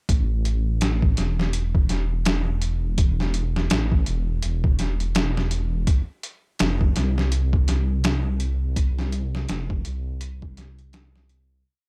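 A looped, edited breakbeat sets a swung 83 BPM groove in 4/4, its 16ths pushed to a 59% swing that gives this short trip hop piece in A minor a hypnotic, cinematic pull. The sampler-style drum kit sounds pitched down and muffled, with a thumpy kick, a medium-tuned snare and hi-hat, all compressed, overdriven and re-recorded in a small room, then placed up front. Beneath it, a dark detuned saw bass rumbles between E1 and C2, its beating unison sawtooth layers blended with a sine tone while long gliding notes sustain from a fast attack. Both parts run together as one continuous groove from the opening moments to the close, with the bass sitting just under the drums in level. The sound is dry, with little reverb, and the whole piece fades out from 7.8 seconds until it ends at 11.7 seconds.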